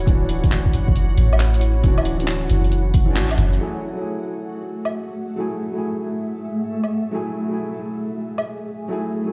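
Future garage with a wistful, nocturnal mood, this short excerpt sets a felt-muted upright piano, soft and intimate with a delay trailing its chords, over a cloudy, blurred granular pad and a dreamy reversed texture glowing in the background, both steeped in their own reverb, as the piano, pad and bass all pump under sidechain compression. A round, dark 808-style bass with tube saturation sits up front until about 3.6 seconds, joined by an overdriven electronic kick that drops out around 3.1 seconds, while a deep house kit of overdriven handclaps, hi-hat and woodblock carries on to 8.4 seconds. After a band accent at 3.2 seconds the harmony moves from Dmaj9 to F#m9 and a filter sweep runs across the pad, the whole mix ringing in a lush hall reverb as if played through a big sound system in a bare room.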